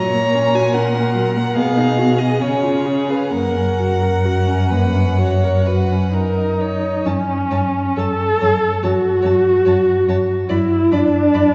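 Classical chamber music for string quartet, this slow romantic movement is tender and warm, moving with a flexible rubato in four, and it is cut from a longer piece. One bowed violin carries the melody in a clear, smooth, even voice with vibrato. A second violin sings a focused, rich inner line beneath it. The viola, sitting up front, supplies an expressive accompaniment with portamento and a smooth top, and the cello, also up front, anchors the bass with a focused, rich tone. The harmony darkens into the minor at 7.1 seconds, and the four players sound from farther back in a concert hall whose long, wet reverb lets every line bloom and linger.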